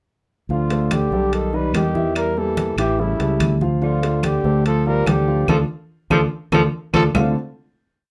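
A dark, breathy trumpet with light vibrato leads this short, fiery Afro-Cuban jazz piece in D minor at 144 BPM with motif-based song phrases, shadowed by a mellow, subtoned tenor saxophone harmony line mostly in thirds, over a round, up-front fingered electric bass tumbao that anticipates the chords, a background grand piano montuno in octaves with audible action noise, low-tuned congas with slaps and open strokes, metal-shell timbales playing a shell pattern and bell, and woody claves keeping a two-bar time line, all driving through a band accent at 5.5 seconds and a drum fill at 6.3 seconds before a final chord at 7.1 seconds in a moderate studio ambience.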